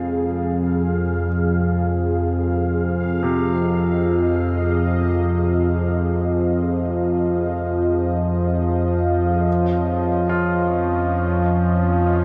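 A warm, detuned analog drone sits up front from the very first moment, its sawtooth and pulse-wave layers slowly evolving under chorus, while a sweeping resonant pad, a bright grand piano and a bubbling stepped-filter texture sound alongside it in this vast, ominous dark ambient piece in free time. The full-bodied pad holds sustained chords with a sub octave beneath, its filter swelling gradually through a slow attack and long release. Further back, the brilliant, natural piano plays arpeggios colored by tape echo. Higher up, the resonant synth texture fades in across the whole 12.2 seconds, its random filter steps giving it a gurgling, sparkling quality wrapped in its own reverb. The harmony rests on Fm before shifting to Dbadd9/F at 9.5 seconds, and the excerpt, cut from a longer piece, is bathed in a huge, wet ambient reverb that lends the sound a cavernous depth.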